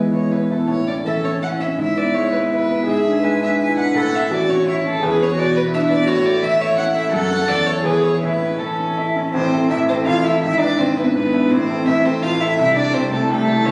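Captured on a phone in a recital hall, the sound is wet and compressed, with a reverb time of 1.7 seconds. This quick, spirited classical-period movement for piano trio runs at 166 BPM in 3/4 with a rubato feel, shifting from a cheerful A major to A minor at 9.3 seconds. A clear grand piano carries the accompaniment, a rich, pure cello bowed sul tasto supplies a second line, and a warm violin with a soft attack sings the floating melody.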